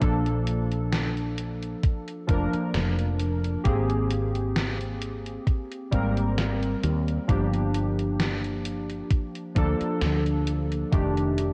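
Through a light reverb and cassette-tape haze, this dreamy, nostalgic vaporwave excerpt drifts at 66 BPM in Bb major, with warbly lo-fi synth keys carrying detuned, chorused chords through tape echo and 12-bit sampler grit over a round, woody fretless electric bass, a thumpy up-front electronic kick, and a gated 80s drum machine's hi-hat and gated-reverb snare, moving from Bbmaj7 through Abmaj9 and Gm7 to F13.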